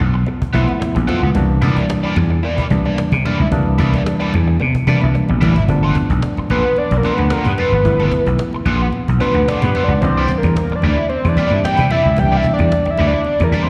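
Funk with an energetic, funky mood, cut from a longer piece and heard as a live gig through the venue's PA with light recital hall reverb, built on a growly, punchy slap bass up front, a woody cajon with faint snares, very quiet high-tuned congas, crunchy overdriven guitar with wah and slapback echo, and worn, slightly out-of-tune tine electric piano stabs through a combo amp with slapback echo and analog delay. The harmony moves between G9 and C9, and after a drum fill at 5.1 seconds a fat sawtooth-and-square analog lead with a sub octave, wave-folding and vibrato enters at 6.5 seconds for a sustained, mellow solo up front, carrying slapback echo and analog delay to the end.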